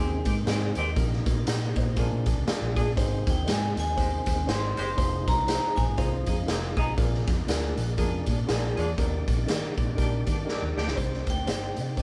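Uptempo 1960s-style soul with an uplifting, warm glow and a swung feel, cut from a longer piece. A raw garage drum kit sits up front with a punchy kick, a medium-tuned snare and a rolled-off top, while a muted fingered electric bass gives a round, foam-muted, amped bottom end. A baby grand piano adds intimate accompaniment with audible action noise and tube saturation, and a dark, vintage saxophone section with light vibrato carries a second line. In the background, an overdriven tonewheel organ holds thick, gritty sustained chords through a fast rotary speaker and chorus vibrato. A metallic, ringing vibraphone played with hard mallets takes the melody from 3.3 to 6.7 seconds, and returns at the very end after a drum fill at 10.5 seconds, all set in light reverb like a band playing live in one room.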